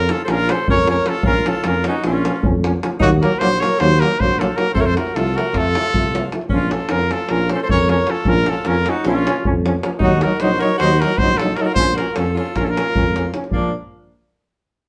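The recording has the live sound of a brass band playing together in one room, wrapped in a wet studio reverb. This is a bittersweet, virtuosic stretch of Balkan folk in nine-eight time, cut from a longer piece. Up front, a warm trumpet carries the melody with light vibrato and a smooth top, while a punchy, close-miked alto saxophone plays a forceful second line in a pop style. A dark tuba with a soft attack holds down the bass, and in the background a brilliant, vintage-toned trombone and a distant, roomy euphonium with gentle vibrato fill out the accompaniment over a deep, compressed and saturated davul. The harmony moves between Bb minor, Eb minor and F, then turns to a Bb major chord at 13.5 seconds, shortly before the music breaks off.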